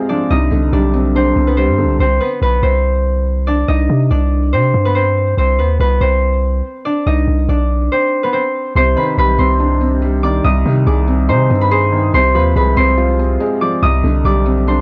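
Set in a half-time 4/4 feel at 142 BPM, this drill-flavored hip hop piece in C harmonic minor carries a tense, dark mood, and it is cut from a longer work. A fingerpicked concert harp leads the melody throughout, its ringing acoustic tone placed up front and softened by a low-pass filter. A felt-muted upright piano offers intimate, mellow accompaniment with audible action noise, dropping out at 2.0 seconds and returning at 8.8 seconds as the second section begins. Beneath them, a long, sustained 808-style bass enters at 0.3 seconds with a deep sine tone, a fast attack and a decaying tail. The harmony drifts through suspended and add9 colors such as Gsus4, Csus2 and Cmadd9 before shifting to Ab/C and Fm/C over a C in the bass. The mix has light reverb on a dry, gritty hardware sound with transformer saturation.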